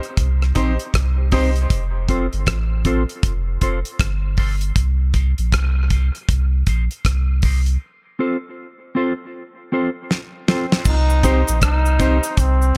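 Dub reggae at 79 BPM in C dorian, deep and heavy, opens on a break where a damped 70s drum kit with a fat snare, tight kick and dark cymbals sits up front beside a round sub bass, a mellow clean electric guitar carries a filter sweep from 1.7 to 7.8 seconds, and bright baby grand piano stabs with audible action noise sound in dub echo. Near the end of the break a clear, vintage trombone melody enters at 10.5 seconds and a cabasa in a small room joins at 10.8 seconds, as a drum fill leads into a closing section at 10.9 seconds.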